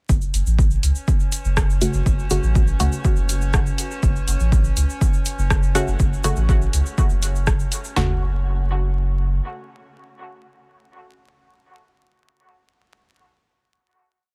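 Muted, detuned sawtooth chord stabs enter at 1.8 seconds, sparse and echoing with chorus, phaser, dub echo and sidechain pumping, and ring on through the final chord until 11.8 seconds in this meditative, deep dub techno piece in F# minor at 122 BPM. Beneath them, a round, up-front sub bass plays a syncopated riff with pumping, while a punchy deep house kit drives a four-on-the-floor kick with snare and floor tom, joined by tape-warm analog hi-hats and rim clicks and grainy, bright cabasa sixteenths. An eerie, metallic FM drone holds a high C#4 with chorus and reverb, and a bed of vinyl crackle sits under the whole piece.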